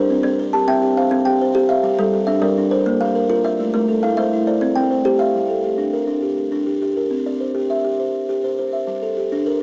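A rolling 12/8 cycle in the interlocking style of southern African mbira music gives this fragment of a longer piece a hypnotic, trance-like pull. Two up-front kalimbas play arpeggios together: a buzzing one on a solid board, soft and woody with an airy ring under fingertip plucks, and a hollow-box kalimba, thumb-plucked and mid-forward, which stops at 5.6 seconds, leaving the buzzing instrument to carry the cycle alone to 9.6 seconds. Both have a cassette-tape tone, set in light reverb and small-room ambience, like a home recording heard through a small speaker.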